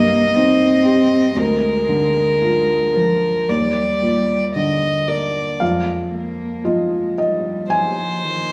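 From the first moment, a soft, mellow felt-muted upright piano with audible action noise and short sustain, a pure, floating solo violin bowed sul tasto on the melody, and a dark cello with light vibrato and a smooth top on a second line share this hopeful, intimate neoclassical fragment, played with rubato in a reverberant recital hall as the harmony moves from Cm through Bb7/D and Ebmaj7 to Fm7 at 5.6 seconds, where a new section begins.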